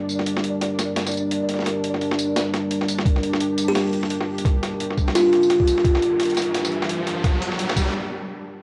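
Half-time drum and bass with a dark, cinematic mood, this short build-up sits on a single G minor chord in a damp room with the character of a home cassette recording. A deep, moody analog pad of detuned square, sawtooth and triangle tones with a sub octave holds sustained chords under sidechain pumping and chorus. Behind it, a pulsing gated texture of detuned unison triangles hums in the background with chorus and its own reverb. A gritty, pitched-down sampler-style kit of hi-hat, high-tuned snare and tambourine carries a swung, overdriven groove from the start, and a thumpy, overdriven electronic kick joins up front at 3.1 seconds. A woody, buzzing kalimba with a thumbnail pluck rings out a brief phrase through tape echo from 3.7 seconds, while an electronic riser climbs from 4.8 seconds into a short break just before the cut.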